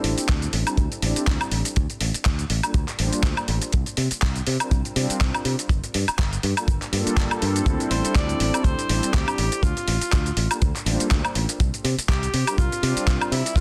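Nu-disco at 122 BPM in G dorian with a sleek, groovy 16th-note swing, this excerpt sets a warm analog pad, chorused, pumping and tape-echoed, over a bright, punchy fingered electric bass, a gritty, overdriven sampler-style kit of handclaps, hi-hat, shaker and woodblock, and a dry, tight kick from 0.3 seconds, before a clear, forceful tenor saxophone with light vibrato and tape echo takes the solo at 7.9 seconds over sus4 and minor-ninth chords in a dense, heavily limited modern master.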